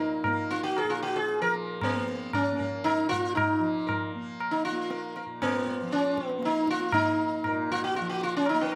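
A bright, plectrum-plucked sitar and a mellow tanpura drone open this short Hindustani excerpt together, setting a meditative, longing mood in raga Bhairavi centred on Bb. Sitting up front, the sitar carries the melody between Bb3 and Bb4, its buzzing tone haloed by sympathetic strings and a slapback echo. The tanpura holds a soft, shimmering drone lower down, from Bb2 to Bb3, well beneath the lead. A low-tuned, ringing tabla joins at 0.2 seconds, with a small-room character of its own, marking a straight feel in a seven-beat cycle. Starting around 117 BPM, the performance gradually gathers pace across its nearly nine seconds, set in an open-air space with light reverb.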